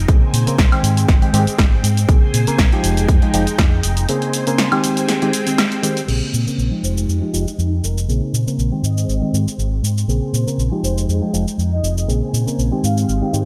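A light reverb and digital ambience frame this short cut from a longer filtered disco house track, funky and groovy at 120 BPM in Bb dorian with a slight swing on the sixteenths, as filter sweeps run across both halves. A swirling, vintage string machine holds sustained chords through phaser, ensemble chorus and a 12-bit sampler grit, pumping against the sidechain, while a reedy, clean electric piano fills in the accompaniment with its own phaser and filtering. Up front, a dark, round fingered electric bass anchors the Bbm9, Abmaj7 and Fm9 changes. A layered, punchy electronic kick drives the opening until 3.7 seconds, and a tape-warm analog drum machine, re-recorded in a small room, keeps a punchy snare, hi-hat, shaker, woodblock and crash going throughout. At 6.8 seconds a fat, detuned synth brass melody enters in the background, mellow and chorused with digital delay, carrying the second section to its close.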